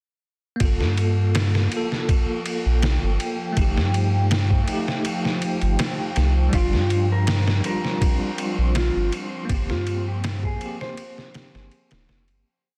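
A looped, edited breakbeat on a pitched-down, gritty sampler-style kit, with thumpy kick, snare and ride, drives this melancholic, cinematic trip hop piece alongside a round, sine-like sub bass playing a syncopated riff up front. A bell-like tine electric piano with tremolo and lo-fi sampler grit holds close-voiced chords with syncopated pushes, while a deep, detuned sawtooth pad with chorus and reverb sustains a high note in the background. A clean, fingered electric guitar enters at 6.5 seconds with a repeating riff through tape echo, and an airy, wind-like noise texture appears at 7.9 seconds before the piece fades out from 8.5 seconds.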